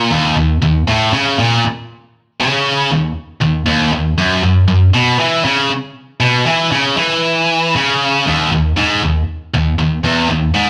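A straight 4/4 pulse drives this dark, relentless metal fragment, cut from a longer piece, until the feel drops into half time at 8.3 seconds and holds there to the close at 10.7 seconds. A single high-gain electric guitar carries the whole passage alone, picked and double-tracked in a low register, with its tuning set to A4 = 438 Hz. Its tone is bright and heavily distorted, and it sits up front in the mix. The performance was captured live in one room, and a moderate large-studio reverb lends the guitar a sense of space around its biting attack. The shift into half time gives the final seconds a heavier, more crushing weight.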